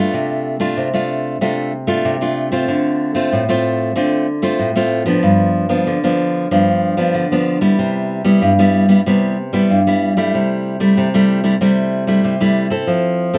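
A straight samba groove in 4/4 carries this sunny, joyful excerpt, played entirely by a solo nylon-string guitar. The fingerpicked classical guitar sounds bright and up front, with audible finger squeak, as it moves through lush chords such as F6/C, Dm7, G7 and Cmaj7. A moderate small-room reverb lends the performance an intimate, natural space.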